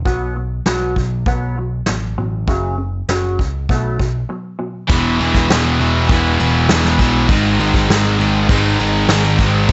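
A steady, straight 4/4 pulse at 100 BPM drives this restless, anthemic quiet-loud alternative rock excerpt, where a clean, hollow-bodied semi-hollow electric guitar with analog chorus plays up-front arpeggios over a growly overdriven picked bass and a vintage brush drum kit with dark cymbals and a punchy kick, until a break at 4.3 s gives way at 4.9 s to E major and riffs from three distorted guitars, one scooped, one bright and double-tracked with high gain, and one a thick, dark fuzz, all sitting in the background under light reverb.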